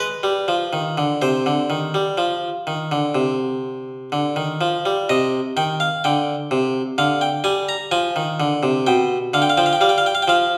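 This is a classical, baroque-style two-part invention for solo harpsichord, serious and driving in mood, in a straight four-beat metre. The harpsichord plays alone throughout the 10.6 seconds, an Italian-style instrument with one set of strings whose plucked, bright tone sits mid-forward and up front. Its writing spans from the low register up into the treble. A new section begins at 5.1 seconds, with the harmony darkening toward a half-diminished chord before settling on a dominant seventh near the close. The instrument rings in a wet recital hall, probably a church or concert space, whose reverb trails each note, and the passage is cut from a longer piece.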